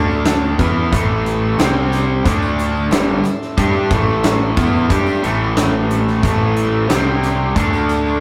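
A rough rehearsal-room sound with a moderate small-room reverb frames this gritty, brooding classic rock cut, where an up-front crunchy guitar with spring reverb and a cranked stack guitar grind out overdriven picked riffs over a growling, distorted electric bass and a big acoustic drum kit with a punchy kick and hi-hat, while a bright, shouting tonewheel organ holds sustained chords through a slow rotary speaker in the background and a jingly tambourine sits faint and distant.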